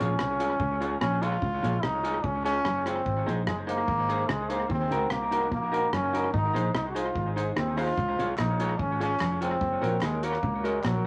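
Ska with a joyful, bouncy straight feel in this excerpt from a longer piece, its chords moving from Db through Ab, Ebm and back before landing on Gb. A brilliant, punchy trombone carries the melody up front, singing with a light vibrato in a pop style. Beneath it, a vintage hollow-body jazz guitar adds dark, picked accompaniment soaked in tape echo, while a compressed clean electric guitar plays a low riff with tremolo from the background. A round, foam-muted fingered bass anchors the harmony alongside a deep reggae drum kit whose tight kick, hi-hat and rim click sound dry and smooth with a rolled-off top, touched by tape echo. At 8.4 s a very quiet group handclap joins from a small room, and the whole take sits in a wet studio ambience.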